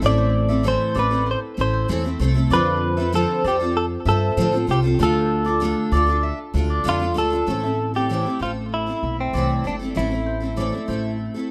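A straight 4/4 pulse at 97 BPM carries this wistful, reflective acoustic pop piece in A minor, cut from a longer work and moving through Am, F6 and Dm before returning to Am at 7.5 seconds. A full-bodied, double-tracked steel-string acoustic guitar and a woody, thumpy pizzicato upright bass sit up front, while a clean, compressed electric guitar recorded direct carries the melody through tape echo. A mellow, round mandolin adds picked arpeggios high above, all set in a small room with the rough feel of a home demo.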